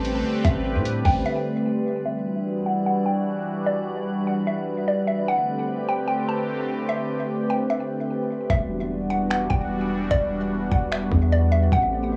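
A woody, mallet-like synth pluck leads this hazy, melancholic excerpt of atmospheric cloud-rap in E minor, its melody sitting over a sweeping, resonant sawtooth pad, a deep sine 808-style bass, a muffled lo-fi sampler-style kit of finger snaps, hi-hat and a thumpy kick, and a faint drifting glass-harmonics texture. The tempo is 149 BPM in 4/4 with a half-time feel, and the harmony alternates between Am11 and Em9. The bass and drums drop away after about a second, leaving the pluck, the full-bodied, detuned pad with its sidechain pumping and a filter sweep, and the glassy, calm texture with its own reverb to carry the middle stretch. At 8.5 seconds the texture drops out as the bass and pitched-down, compressed drums return on an Em9 chord, now with the hi-hats muted. The pluck carries chorus, phaser and tape echo, and the bright pad sits up front, while a cassette-tape character and light small-room reverb lend the whole piece a home-recorded haze.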